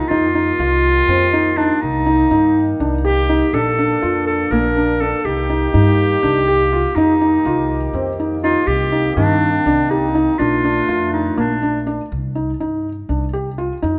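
Pensive yet urgent, this contemporary chamber piece in C dorian moves in a straight 7/8 at 245 BPM in eighths, with a clear, up-front clarinet singing a soft-attacked second line over mellow, lightly vibrato-tinged sustained woodwind chords, while a felt-muted upright piano spins intimate arpeggios with audible action noise and a woody, growly pizzicato upright bass anchors the bass. The clarinet and woodwinds fall away near 12 seconds, leaving piano and bass to carry on to 14.0 s, all set in a moderate recital hall reverb as this excerpt is cut from a longer piece.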